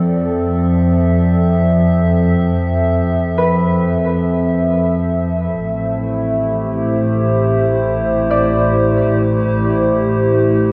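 A warbling, nostalgic tape-like pad sits up front with mellow chorused chords moving from Fmaj7 to Am7 in this reflective, melancholic ambient excerpt in free time, while a thumb-plucked concert harp rings out arpeggios through diffuse delay and shimmer reverb in the background until 10.2 seconds, and a dark, smooth bowed chamber double bass section with light vibrato holds the low end, all set in a lush hall reverb with worn cassette pitch drift.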